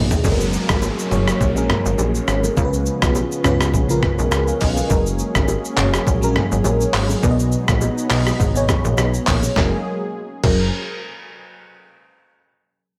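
Afrobeats with a sunny, joyful lilt, where a gritty, pitched-down boom bap sampler-style kit with a thumpy kick sits up front beside a punchy, funky plucky analog bass, while a lush, dreamy FM electric piano with soft pad layer, treated with chorus and phaser, adds a fill at 4.0 seconds over a smooth, mellow analog pad in the background, very quiet bongos and congas, and an electronic downlifter that runs until 4.9 seconds, all in light digital ambience.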